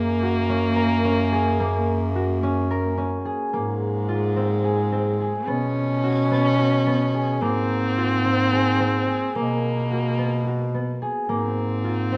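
Shimmering and restless, this contemporary chamber piece in 7/8, cut from a longer work, sets a concert harp's ringing, thumb-plucked arpeggios over a warm bass clarinet bass line, while a dark, woody viola carries a bowed second line with vibrato and portamento, all three up front in a close, detailed recording with light reverb that moves into a new section at 3.5 seconds.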